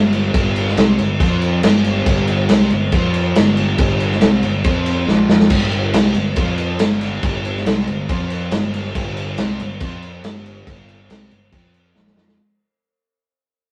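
A rough rehearsal-room recording with tube saturation and light reverb carries this gritty, heavy blues rock power trio and southern rock excerpt, where a double-tracked, compressed fuzz guitar riff moves between G5 and F5 power chords over a growly, overdriven fingered bass, while an up-front vintage drum kit with a muffled, lo-fi tone, dark cymbals and a tight kick adds fills on a Bbsus2 at 5.1 and 12.0 seconds as the sound fades out from 5.5 seconds.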